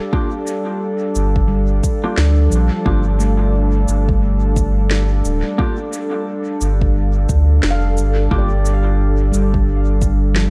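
Meditative and hazy, this ambient dub excerpt drifts on a warbling, detuned tape-like pad of sustained chords with chorus and built-in reverb, while a ringing steel handpan plays arpeggios through dub echo in the background. A deep electronic kick drum and a woody electronic snare with shaker, both tape-warm and re-recorded in a large room, carry a swung groove. A dark, clean electric guitar adds compressed stabs with dub echo until 8.5 s, and a round sine sub bass enters up front at 1.2 s, all set in light reverb.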